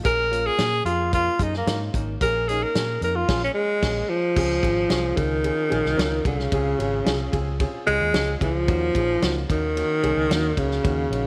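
Danceable and uplifting, this short cut of uptempo 1960s-style soul runs at 111 BPM in a straight 4/4 in Db major. A breathy tenor saxophone sits up front with a jazz-style solo full of vibrato and scooped notes, featured through the first 4.4 seconds, where the band hits an accent from 3.3 seconds. Beneath it, a dark, round, foam-muted fingered electric bass gives punchy support; a small-room acoustic kit of kick, snare, hi-hat, ride and crash has a tight kick and medium-tuned snare; and a woody, slightly detuned upright piano stays in the background over chords moving from Bbm7 to Dbmaj7 and Ebm7, all under a light reverb.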